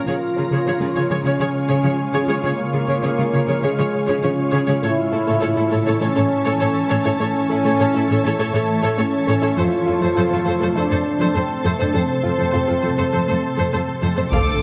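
A mellow French horn section and a shimmering, ethereal ambient pad with chorus open this brooding, futuristic hybrid orchestral and electronic film cue at 101 BPM, joined almost at once by a lush viola section, a close, focused cello bass and a very quiet, round, nasal pluck tracing arpeggios through chords of C#, A and F. The strings sing with vibrato in a moderate concert hall. At 14.3 seconds a taiko ensemble struck with hard sticks, an electronic impact, a smooth-topped violin melody with a second violin line, a trombone section and a distant double bass all arrive together just as the excerpt is cut off.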